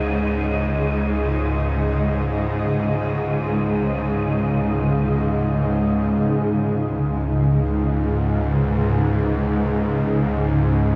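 Dark and ominous, this free-time dark ambient drone excerpt holds a C#sus2 chord as a tense, string-like bowed drone with vibrato and a cloudy, evolving granular pad sit up front in a huge reverb-soaked space, while an airy, breathy wind-like tuned noise texture hovers in the background until 6.1 seconds.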